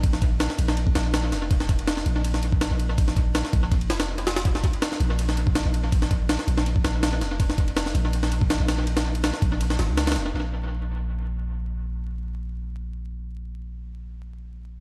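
Drum and bass in a dark, nostalgic jungle vein at 163 BPM in Bb minor, this excerpt sets a gritty, pitched-up sampler kit of thumpy kick, medium-tuned snare and ride, compressed and up front with dub echo, against a deep, sine-toned 808 bass held long under tube saturation, the kick dropping out at 9.6 seconds before the drums stop at 10.3 and the bass carries on alone to 14.8, inside an echo-heavy mix with light reverb, vinyl crackle and lossy compression artefacts.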